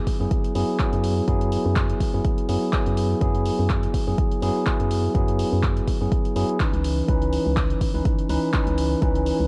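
Deep house excerpt at 124 BPM with a smooth, deep mood and swung sixteenths, where up-front tine electric piano stabs carry vintage 12-bit sampler grit, tape echo and sidechain pumping over a layered, tape-warm electronic kick, a punchy analog drum machine adding handclaps and hi-hat, and a hollow, dark, organ-like FM bass that also pumps, all dry and dusted with vinyl crackle as the harmony moves from F#9sus4 to C#m9 at 6.8 seconds.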